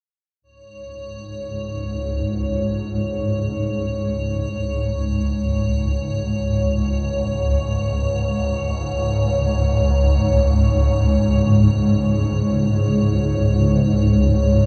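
Steeped in a wet cathedral reverb and a dark, warm production, this unsettling, ominous dark ambient drone excerpt unfolds in free time as an icy, crystalline glass pad with chorus and shimmer reverb sustains a high C#5 from 0.7 seconds, joined at 1.1 seconds by an up-front, swarming, nasal drone spanning C#2 to G#2, detuned and granular with a moving notch, both parts sounding until 14.7 seconds.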